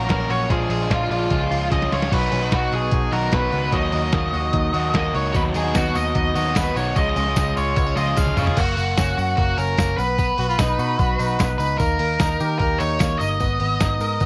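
A digital ambience wraps this short cut of jangly indie pop, which moves at 149 BPM in a straight 4/4 with a youthful, nostalgic mood. Up front, an octave-fuzz lead guitar carries the melody with a dark, distorted edge, while a bright, twangy clean electric guitar recorded direct picks out arpeggios beneath it. A crunchy overdriven guitar adds accompaniment until it drops out at 8.6 seconds, and a vintage foam-muted electric bass supplies a round, dark low end. The lo-fi sampler-style drum kit sounds compressed, pitched down and muffled, with a thumpy kick, a medium-tuned snare and short fills; a jingly tambourine joins in the background from 5.3 seconds. Near the close, a clear trumpet with vibrato and a smooth top slips in briefly from 10.4 seconds as a distant second line, over chords that move from F# through B and D# before settling on G#madd9.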